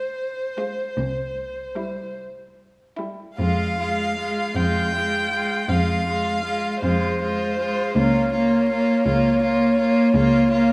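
Melancholic and elegiac, this brief passage cut from a longer piece is a slow romantic movement for string quartet in F minor, moving in a rubato 12/8 at roughly 48-56 BPM. The first violin opens alone at 0.0 s with the melody, its bowed tone soft in attack, touched with vibrato and expressive portamento, and placed up front. The second violin and viola join at 0.6 s, the violin carrying a smooth, even second line while the viola, rich and vibrato-laden, supplies accompaniment that is both up front and distant. The cello arrives at 1.0 s with a bass line of the same even, bowed richness, and the harmony settles on C before turning to F minor and later to B-flat minor over D-flat. A reverberant recital hall, blended with a small room's ambience, wraps the quartet in a glowing halo.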